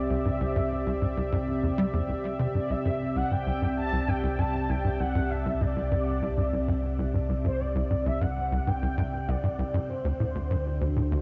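Ambient, sequencer-driven space music in C lydian at 98 BPM in 4/4 with a straight, expansive and luminous feel, cut from a longer piece and moving from Cadd9 to D7 at 9.9 s. A tight, punchy sequencer bass riff of filtered sawtooth and square waves drives from 0.1 s with ensemble chorus and tape echo, over a deep, round sine sub bass with tube saturation. An evolving, detuned pad sits up front with filter swells, a slow attack, chorus and shimmer reverb, while a mellow horn-like sawtooth lead carries the soft-attack melody with vibrato, all set in a dark, warm production and a wet plate reverb.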